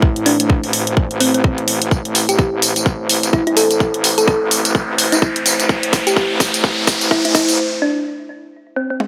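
A swung sixteenth-note groove in four drives this aggressive, bouncy bass house build-up, cut from a longer piece, with a tight, tape-warm electronic kick up front and a layered garage kit of hi-hat, tambourine and toms that breaks into a drum fill at 1.9 seconds. Beneath it, a metallic wobble bass growls low with FM grit, overdrive, chorus and sidechain pumping, saturated and compressed yet oddly mellow at its core. A dark analog pad holds sustained minor chords with a slow attack and detuned, wave-folded depth, pumping gently against the kick while a filter sweeps across it. On top, a round, tine-like synth pluck with a thumb-piano character plays a gentle, warbling melody through chorus and digital delay. An electronic riser enters at 3.7 seconds, and at 7.6 seconds the track drops into a break where the garage kit and the pluck carry on, all set in a light reverb.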